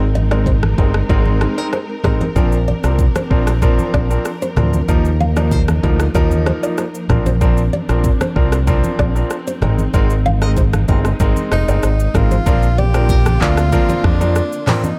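This romantic, breezy afrobeats piece, cut from a longer work, opens on a break in which a clear, intimate concert grand piano accompanies while a dark, lush bowed string section sets out sustained chords over an up-front, punchy fingered electric bass with an envelope filter. Within the first second a fingerpicked nylon-string guitar riff with delay and finger squeak sits in the background, joined by very quiet, close and dry congas and an electronic afro-pop drum kit with a deep kick, metallic hats, handclaps, rim click, shaker and toms. At a straight 95 BPM in Bb mixolydian, the harmony moves among Abadd9, Bbadd9 and Ebsus2, with the piano's audible action noise adding a polished, present touch. At 11.5 seconds a breathy tenor saxophone enters with a jazz-style solo melody, its scooped notes and vibrato treated with delay. The production is dark and warm, bathed in studio reverb.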